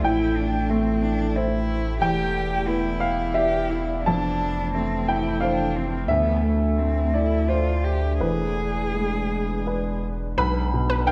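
This melancholic, fragile neoclassical excerpt opens with four parts sounding together from the start: a woody, slightly detuned upright piano sitting up front, its long sustain carrying the accompaniment in a rubato 3/4 lilt. Beneath it, a saturated, thick sub bass with a fast attack anchors the low end, while a single bowed cello adds a rich, focused second line with vibrato. In the background, a dark, warbling vintage pad with a slow attack and long release holds sustained chords, coloured by chorus and its own reverb. The harmony drifts from A minor through Em7, Fmaj7 and D5 to E7. At 10.4 s a lush, punchy unison pluck enters with decaying arpeggios, its ring-modulated, filter-swept tone arriving on a B diminished chord. A moderate recital hall reverb gives the recording a gentle sense of space.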